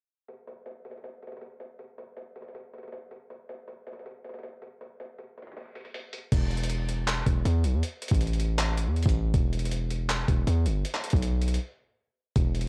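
A gritty, pitched-down sampler-style drum kit of thumpy kick, handclaps, hi-hat and crash cymbal drives this hard-hitting, melancholic half-time trap and hip hop passage, its overdriven, compressed hits pushed up front and colored by cassette tape. A filter sweep runs under the opening until a heavy 808-style bass arrives at 6.3 seconds, its punchy sine tone layered with noise, fast in attack and decaying, before a brief break at 11.6 seconds. The dry, low-passed home cassette sound is cut from a longer piece.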